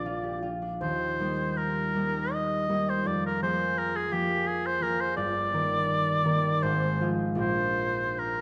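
From the first moment, a clear oboe with gentle vibrato and soft attacks sings a tender, lyrical melody up front while a bright, ringing concert harp accompanies with fingerpicked chords, the pair flowing in a rubato three-beat romantic classical feel through a moderate stage reverb in this short passage cut from a longer piece.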